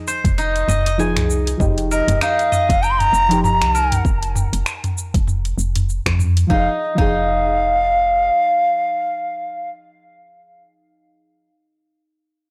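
A swung 16th-note groove at 98 BPM in 4/4 drives this hypnotic, warm organic downtempo excerpt in F minor, cut from a longer piece. A deep electronic kick with a tape-warm edge anchors the beat alongside an overdriven afro-pop kit of finger snaps, metallic hi-hats, shaker and toms, both set in a small room; the kit drops away at 6.5 seconds as a brief second section begins. Beneath them a woody FM bass, soft and round with a fast attack and dark decay, pumps against the beat through transformer saturation, while a mellow chord stab, plucky and filtered with a moving notch, colours Fm7 and Ebadd9/F with chorus, phaser, sidechain pumping and analog delay. A steel-string zither picked with fingerpicks rings out silvery arpeggios through analog delay from the opening. At 1.9 seconds an airy, reedy bansuri enters up front with vibrato and tongued notes, its lifted highs and analog delay carrying the melody until 9.7 seconds over a dry, gritty hardware sound with light reverb.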